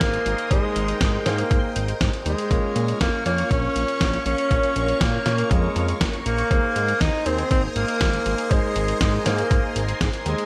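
From the first moment, a breathy, whispered alto saxophone carries the melody up front, its soft attack trailed by delay, in this melodramatic, nostalgic italo disco fragment. Behind it, a lush, vintage string machine holds sustained chords with a slow attack, its sawtooth tone thickened by a sub octave, a moving notch and ensemble chorus. A thick, detuned analog bass with a filter sweep and fast, decaying notes anchors the low end until 10.3 seconds, while an intimate grand piano with audible action noise adds stabs in the background. The drums pair a thumpy electronic kick, which stops at 10.1 seconds, with a dusty, gritty sampler-style kit whose compressed hi-hat and fat snare carry gated reverb. The harmony moves from Abadd9 to Bbm and back, all set in a light reverb.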